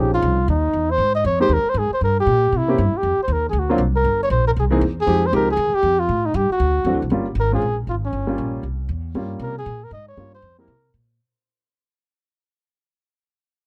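Swinging and moody, this brief cut from a longer small-group swing and bop piece moves at a brisk 236 BPM in 4/4 with a swung eighth-note feel. A trumpet with a bucket mute carries the melody up front in a dark, veiled, forceful voice with a smooth top, over a woody upright piano and a thumpy, gut-strung pizzicato upright bass. Heard in a dry, close, 1970s-style small room, the harmony moves through altered dominants and half-diminished chords before the sound fades out from 7.1 seconds.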